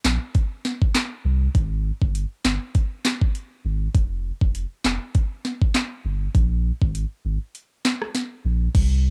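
Dry and close, this home cassette recording, cut from a longer dancehall piece, moves at 100 BPM in 4/4 with a slight 16th-note swing and a tough, sultry mood, as an up-front electronic island pop drum kit, overdriven and tape-worn, drives a knocking kick, sharp snare, metallic hi-hats, rim clicks, handclaps and crash cymbal over a deep, round sine sub bass with a fast attack and long sustain, before a break at 7.5 seconds.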